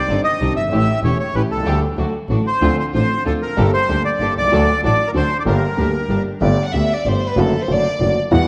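A dramatic, melancholic tango in 3/4 with a rubato feel, cut from a longer piece, where a reedy, up-front bandoneon carries the melody over woody upright piano and an earthy, biting bowed double bass with light vibrato. Distant, lush string-section stabs sit in the background until the bandoneon and strings stop at 6.2 seconds, and a rich, smooth chamber violin section takes a solo second line from 6.4 seconds. The whole sits in moderate scoring-stage reverb with the worn, warbling pitch drift of old cassette tape.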